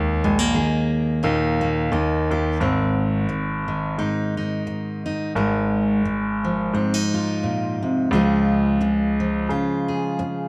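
Dark, warm production with light reverb frames this gentle, pastoral acoustic folk excerpt at 87 BPM in Ab major, where an up-front, bright, full-bodied fingerpicked steel-string jumbo guitar carries the lightly swung accompaniment while a clear, polished concert grand piano holds down a deep bass line, both playing throughout as the harmony moves from Ab through Fm7/Ab to Db after a shift at 2.6 seconds.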